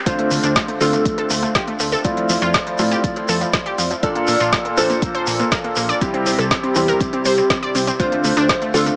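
Progressive house drop with an emotional, bittersweet mood, cut from a longer piece, where a catchy detuned unison lead with lush chorus and tape echo carries the melody over round analog pluck arpeggios, soft felt-muted upright piano stabs with digital delay, a funky plucky analog bass entering at 0.3 seconds, a deep layered electronic kick, a deep house kit with woody snare and smooth hats, and a grainy shekere, all moving through Dm7, Fmaj7, Bbmaj7 and C with sidechain pumping on the pluck, piano and bass, in a light digital ambience with a small speaker sound.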